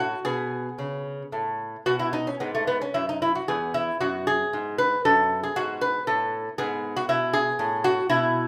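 A bright, delicate solo lute sits up front in a moderate recital hall reverb, its double nylon strings, some doubled at the octave, fingerpicked across a range from E2 to B4. This serene, radiant baroque-style dance moves in a rubato 12/8 at 76 beats per minute, tuned to A4 = 442 Hz, passing through Amaj9, B5 and E chords in a short 8.5-second excerpt cut from a longer piece.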